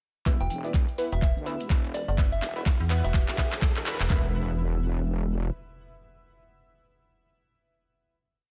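A swung four-on-the-floor kick from an up-front, knocking garage drum kit with toms and claps, layered with a big-room dance kit's programmed hats, shaker and backbeat, drives this short, gritty and aggressive bass house piece, where a heavy, saturated wobble bass and a metallic FM bass playing chopped phrases build from 0.3 seconds alongside a soft, pure synth bell and nasal, band-passed chord stabs moved in parallel under a filter sweep, before a background riser and impact carry it into a final chord at 4.1 seconds in a dark, dry mix.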